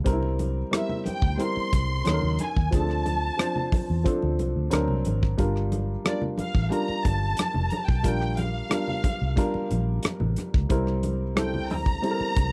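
A lush, distant violin section carries the melody from 0.7 s, its bowed ensemble lines full of vibrato and portamento, over a dry, close 1970s-style soul groove in a straight 4/4 that feels smooth and silky. An intimate baby grand piano with audible action noise and short sustain sits up front in the accompaniment, while a dark, foam-muted fingered electric bass and an acoustic studio drum kit with a punchy kick, hi-hat and rim click hold down the bottom end. Bright, thin-skinned congas sit in the background of this short cut from a longer piece.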